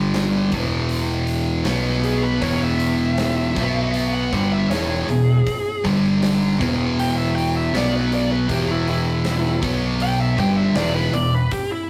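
A straight 4/4 groove at 79 BPM drives this gritty blues rock and southern rock power-trio excerpt, with a big acoustic kit of punchy kick, medium-tuned snare and hi-hat under a sludgy, double-tracked, overdriven guitar riff placed up front and a bright, growling fingered bass pushed through overdrive. At 2.0 s a dark, smooth overdriven lead guitar enters with a picked solo line as the harmony cycles through G5, E5 and B5. The whole thing sits in a stone room's reverb with the rough, tube-saturated feel of a rehearsal-room recording.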